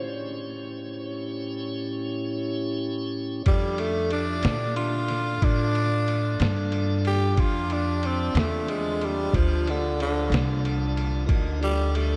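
Smoky and soulful, this slow blues in D minor moves at 61 BPM in a straight 12/8, and the clip is cut from a longer piece. It opens on an A7 break, where a faint, slightly broken-up electric slide guitar sings a brief melody until 2.8 seconds over sustained tonewheel organ chords, piping and scooped with audible key click and a slow rotary speaker. At 3.5 seconds the harmony settles on Dm and a growling tenor saxophone takes a solo up front, raspy and gritty with a soft attack and a touch of delay, playing in a jazz style. Beneath it, a woody, dark upright bass plucks growly pizzicato lines, while a sampler-style drum kit adds a compressed, pitched-down groove of thumpy kick, fat snare and ride cymbal with a muffled, tape-warm character. A cathedral reverb with a 6.7-second decay soaks the whole mix, giving it a dreamy atmosphere.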